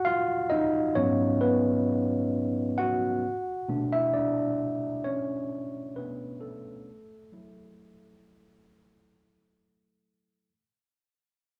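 Soulful and sultry, this short R&B fragment drifts at a slow 66 BPM in 4/4, with a gentle swing on the sixteenths. A lone tine electric piano carries the whole piece from 0.0 to 10.5 seconds, sitting up front and ranging from Ab2 up to Gb5. Its tone is worn and slightly out of tune, lightly overdriven and colored by cassette tape, as if heard through built-in speakers. The harmony moves from Abm7 to Bm9 at 3.2 seconds and settles on Gbm7 at 6.9 seconds. A moderate studio reverb blends with the small-room ambience of a home cassette recording, and the passage fades out across its full length, cut from a longer piece.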